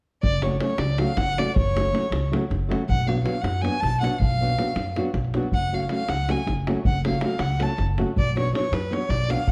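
Virtuosic and bittersweet, this short cut from a longer Balkan folk piece has the sound of a Balkan wedding band, driving along in 7/8 at 318 BPM counted in eighths, with a straight feel in F# harmonic minor. A clear, smooth violin carries the melody up front and close, a single bowed player with even vibrato ranging from B4 to A5. Beneath it, a woody, thumpy upright bass with steel strings plays pizzicato in the low register, while a deep davul, captured with a small-room character, supplies the percussion. A thumb-plucked flamenco guitar adds acoustic accompaniment from 0.4 s, with chords alternating between F#m and Bm. The whole production is dark and warm, set in a moderate recital hall reverb.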